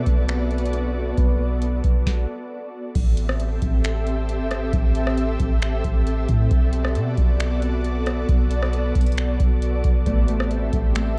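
Ethereal and melancholic, this atmospheric cloud-rap excerpt moves at 135 BPM in 4/4 with a half-time feel, set in A dorian and tuned slightly below standard pitch. An airy, warbling pad holds sustained chords throughout, its detuned vintage tone thickened by ensemble chorus and built-in reverb and pumping against a sidechain. A thumb-plucked Celtic harp rings out arpeggios in the background, heard in the opening seconds and again from 10.1 s, trailed by tape echo. Underneath, a deep, round 808-style bass with a fast attack and a dark decay sits up front alongside a booming analog drum machine whose deep kick, crisp snare, metallic hats, rim clicks, finger snaps and crash carry a gritty 12-bit sampler texture and small-room character. After a brief stop from 2.1 to 3.0 s, the music settles into its second section as the harmony moves between Bm7 and Am7, all wrapped in a light reverb.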